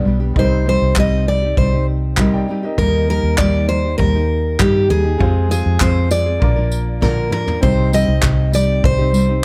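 A full-bodied picked steel-string acoustic guitar carries the melody up front in this tender, reflective acoustic pop piece, over fingerpicked nylon-string guitar with audible finger squeak, a dark, round, foam-muted electric bass, a clear grand piano tucked in the background, and a distant, roomy brush kit with handclaps and tambourine that plays a drum fill from 7.0 to 7.6 seconds.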